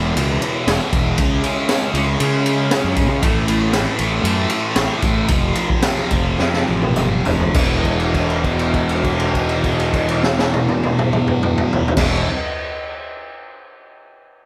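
A straight 4/4 pulse at 100-118 BPM drives this dark, trippy psychedelic rock excerpt, where an up-front, double-tracked fuzz guitar picks a bright riff through distortion and phaser over E5, C#5, A5 and F5 chords, a round, overdriven fingered bass sits beneath, a gritty raw garage kit with a boomy kick and high-tuned snare hits from a small room, and a faint, jingly tambourine plays until 7.8 s, as the tempo slows from 3.2 s into a drum fill and a note is held from 7.6 s under light reverb.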